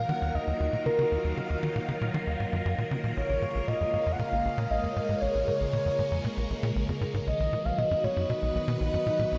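A lush, wet hall reverb with a long tail of 3.1 seconds bathes this short excerpt of ambient, sequencer-driven space music, giving it an expansive, cosmic mood. At 117 BPM in a straight 4/4 in Eb minor, a tight, punchy sequencer bass drives a riff throughout, its fast-attack filter pluck and moving notch giving a wave-folded bite, with tape echo trailing its decaying notes. Above it, a phased string machine holds sustained chords with a soft attack and long release, its swirling, brilliant vintage tone colored by ensemble chorus, phaser and shimmer reverb. The melody comes from a mellow, horn-like synth lead with a round, warbling quality and vibrato, treated with chorus, shimmer reverb and tape echo. The harmony moves from Ebmadd9 to Bbm7 at 3.2 seconds and then to B at 7.3 seconds before the clip ends at 9.4 seconds.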